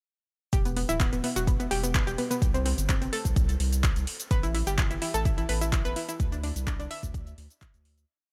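A driving, expansive progressive house piece at 127 BPM in E minor bursts straight into a drop at 0.5 s. A deep, tape-tinged four-on-the-floor electronic kick joins programmed metallic hats, backbeat handclaps and cabasa, with the hats and percussion pumping under sidechain, over a round, dark sine-and-triangle bass in a dotted rhythm that pumps as well. Up front, a sawtooth-and-square analog pluck with a sub octave repeats a sixteenth-note riff over a pedal note, thickened by chorus and tape echo as the chords move through E5, C5, A5 and Dsus2; a fade-out begins at 5.6 s and the kick stops at 7.7 s.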